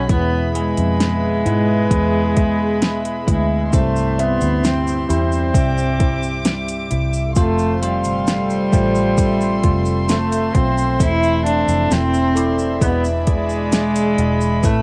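Pop ballad at a slow 66 BPM, emotional and longing, carried by a nasal, reedy bowed cello melody up front over a sustained, floating studio string section and a bell-like tine electric piano with phaser sitting in the background. A fingerpicked nylon-string guitar adds dark arpeggios with analog delay, a round, foam-muted electric bass anchors the low end, and an overdriven R&B drum kit with a fat snare and metallic hats enters at 0.1 seconds, joined by a grainy tube shaker from 3.7 seconds. Light reverb and cassette-tape coloring give this home-recorded excerpt a worn, intimate feel as the chords move from E through C and F to Am/E and E7.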